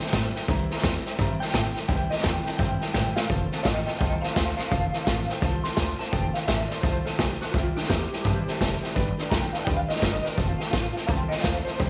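A twangy, slightly broken-up electric guitar solo opens this upbeat, rollicking rockabilly excerpt with a swung feel, its tremolo and tape echo ringing over a brief upright piano fill, a thumpy pizzicato upright bass and a very quiet, bright picked steel-string acoustic guitar. A gritty, saturated garage drum kit sits up front with a punchy kick, snare and hi-hat, playing a short fill at 3.0 seconds. The woody, vintage piano adds another fill at 8.3 seconds from the background, all within a small room ambience that gives the lo-fi sound a close, raw character.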